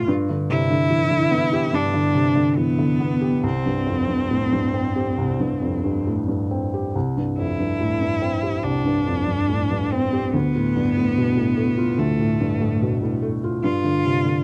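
In a rubato 4/4 at 67-74 BPM, this intimate, hopeful neoclassical fragment in C major pairs a soft, mellow felt-muted upright piano accompaniment with a rich, bowed solo cello carrying a smooth second line with vibrato, both up front in a dry, close 1970s-style studio sound with light reverb, moving through G, C5, Dm and G5 across two matching sections cut from a longer piece.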